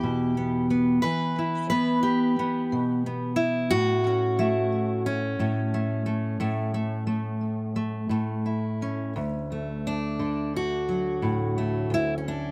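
A fingerpicked steel-string dreadnought guitar plays alone, full-bodied and up front, in a gentle, pastoral folk passage cut from a longer piece. It moves with a loose, rubato feel over a range from D2 to B4, shifting from E minor to A at 3.7 seconds before settling onto D at 9.2 seconds, where a new section begins. Close, detailed microphones catch the guitar with a touch of tape echo, set in light reverb.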